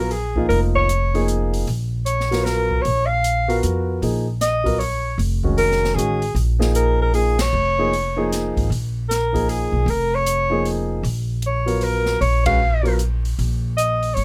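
A dark soprano saxophone carries the melody in this spiritual, intense modal jazz excerpt, a swung 3/4 at 154 BPM in Bb phrygian over a Bbm7 chord. A concert grand piano with deep bass accompanies until 13.0 s, playing alongside a woody, thumpy pizzicato upright bass on gut strings and an airy, polished acoustic drum kit with medium-tuned snare, boomy kick, hi-hat and ride cymbal. The band hits accents at 7.3 and 12.4 seconds, and the dry, close microphones capture the playing in fine detail.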